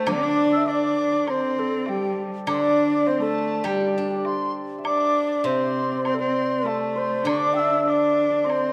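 Set in a moderate recital-hall reverb, this brief cut from a longer Chinese traditional chamber piece moves at 100 BPM in a straight 4/4, pastoral and graceful in mood. A mellow, hollow xiao carries the airy, close-miked melody, while a clear, focused bowed cello with vibrato sits up front beneath it, and a shimmering hammered dulcimer and a distant, expressive large dizi with its buzzing membrane add second lines. A bright, silvery steel-string zither played with fingerpicks rings out the accompaniment, and a dark, dry woodblock ticks very quietly underneath throughout the 8.7 seconds.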